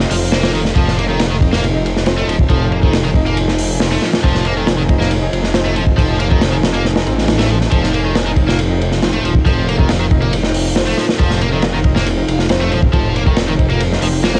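A crunchy, saturated breakbeat drum kit with dark cymbals and a tight kick sits up front in this raw, funky breakbeat excerpt, driven by a thick, menacing detuned saw bass, while a cranked, overdriven stack guitar riff with tape echo cuts through, a smooth vintage grand piano adds background stabs, and a deep, moody ambient pad of sustained chords pumps underneath with chorus and 12-bit sampler grit, all carrying the lo-fi character of a home cassette recording.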